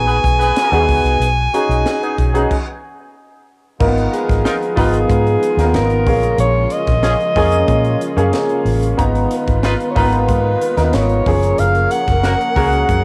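This excerpt opens at once with a mellow alto saxophone carrying the melody up front, its subtone, light vibrato and scooped notes sitting over a grand piano whose long sustain is thickened by lush chorus and cassette tape color. A dark, round, foam-muted fingered electric bass sits close and punchy beneath them, while a crisp fusion kit with a high-tuned snare, tight kick, hi-hat and crash adds a pumping small-room sound, joined by a soft-attacked horn section playing a second line through analog delay. This is polished 1980s jazz-funk pop at 92 BPM in a straight 4/4, G# dorian, and its mood is bittersweet and nocturnal, moving through rootless suspended and sixth chords before a stop from 2.5 to 3.8 seconds. At 3.8 seconds a woody, bowed studio string section enters in the background with sustained chords as the harmony settles into minor six-nine, minor-seventh and major-seventh colors. 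The whole carries light reverb and the intimate ambience of a home cassette recording.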